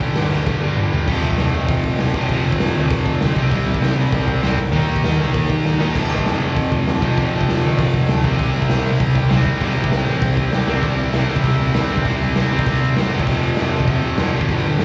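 A straight, driving 4/4 at 197 BPM pushes this upbeat, rowdy punk rock excerpt, with a raw garage drum kit up front whose punchy kick, medium-tuned snare, hi-hat, crash, splash and toms sound gritty and saturated with a dark, rolled-off top, dropping in fills around 0.5, 5.7 and 10.7 seconds. A bright, double-tracked distorted electric guitar picks out power-chord riffs on G5, F5, C5 and Eb5 with a slapback echo, while a fuzz picked electric bass, overdriven and warm, holds down the low end beneath it. The whole performance comes across like a live gig heard through the venue's PA, carrying a recital hall's reverb.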